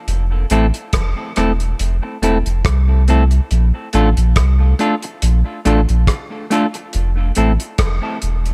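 A laid-back 70 BPM dub reggae groove in 4/4 with a light sixteenth-note swing sets a spacious mood in F major, as a round, sine-like sub bass sits up front beside a cloth-damped, thuddy drum kit of tight kick, hi-hat and rim click with a rolled-off top, while a clean, fingered semi-hollow electric guitar drenched in dub echo plays from 0.5 to 7.5 seconds over Fmaj7 and Bbmaj7 in an echo-heavy small-room mix cut from a longer piece.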